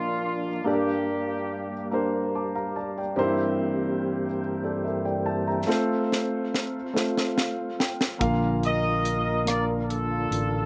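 Dry and close, with little reverb, this short cut from a longer, jubilant slow gospel piece in 6/8 at 48 BPM moves through Bb major over Bb, Gm, C7/G and F. A clear horn section with light vibrato and slapback echo states the uplifting melody at the outset and returns at 8.6 seconds. Beneath it, an intimate grand piano with audible action noise and long sustain accompanies throughout, while a mellow, flute-like tonewheel organ holds sustained chords through a fast rotary speaker and chorus vibrato. A crisp fusion drum kit with a high-tuned snare and tight kick enters with a fill at 5.7 seconds, and a fingered electric bass joins at 8.2 seconds, just after a brief piano fill.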